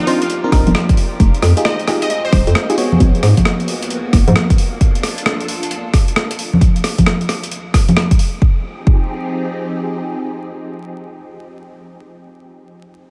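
Dusted with vinyl crackle and light reverb, this bouncy, late-night two-step UK garage excerpt at 133 BPM in F dorian swings its sixteenths over a punchy, up-front electronic kick and a gritty, overdriven sampler-style breakbeat kit of congas, hi-hat and rim click, while a hollow, knocking FM bass with tube saturation drives the drop, an FM electric piano with a bell-like attack adds stabs through chorus, phaser and tape echo, a crystalline, detuned wavetable pluck sketches a brief melody in the background for the first 2.4 seconds, and a silky string machine holds mellow chords under phaser, ensemble chorus and sidechain pumping until 11.5 seconds.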